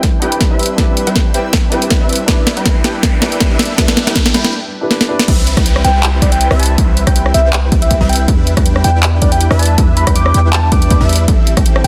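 Over a half-time 4/4 groove at 160 BPM with a light 16th-note swing, this emotional, dreamy future bass excerpt builds with a dark, intimate baby grand piano, a faint shimmering pad, a detuned supersaw stab under a filter sweep, a punchy electronic kick, a trap kit with sharp snare and bright hats, and a background riser, then breaks at 4.5 s before dropping at 5.3 s into a deep, boomy 808 bass and a round, FM-toned synth lead with chorus and delay over Cmaj7 and Em7 chords.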